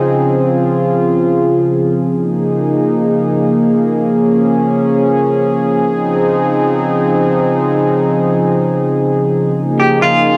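A smooth sawtooth pad with a slow attack and chorus sits up front for the whole cut, holding sustained chords that move between Dbmaj9 and Eb9sus4 in Db major. This blissful, dreamy hip hop fragment floats in free time, tuned to A4 = 437 Hz, in a close, wet booth ambience with the lo-fi character of a home cassette recording. At 9.8 seconds a dark, twangy clean electric guitar enters with a brief fingered melody, colored by tremolo and a low-pass filter.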